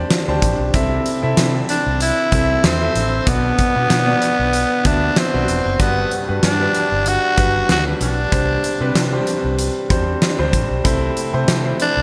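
A clear grand piano and a dark, round, foam-muted electric bass open this romantic, glossy slice of 1980s-style pop, with a huge arena drum kit arriving almost at once, its fat snare and punchy kick soaked in gated reverb and placed up front. The groove sits in 4/4 with a light swing on the sixteenths, and the harmony drifts through suspended and seventh colours, moving from Csus2 to Am/C, Bm and Gmaj7 before circling back. At 1.7 seconds a growling tenor saxophone takes the melody as a solo, breathy and raspy with a gritty edge, light vibrato and a touch of digital delay, sitting just above the rest of the band. The piano stays intimate and natural, its action noise audible beneath the chords, while the amped bass keeps a punchy low end. A moderate plate reverb and bright digital production give the whole piece a polished sheen, and it is cut from a longer work.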